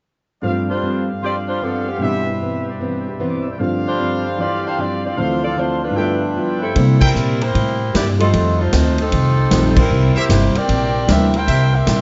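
Brassy and swinging, this big band jazz passage, cut from a longer piece, opens with a dark, full-bodied fingerpicked steel-string acoustic guitar with audible finger squeak and a concert grand piano with deep bass, long sustain and audible action noise filling in the accompaniment, while a brilliant trumpet section punctuates with stabs. Moments later, a clear saxophone section takes up the melody with vibrato and a tight, up-front ensemble sound. At 6.8 seconds the upright bass, woody and thumpy, and a swinging big-band drum kit with a punchy kick, medium-tuned snare, hi-hat, ride and crash enter together to drive the second section. The whole band hits accents at 7.0 and 9.7 seconds, and the trumpets drop out briefly before returning with more stabs near the close. A moderate large-studio reverb gives the ensemble a natural, roomy sound, with a softened top end.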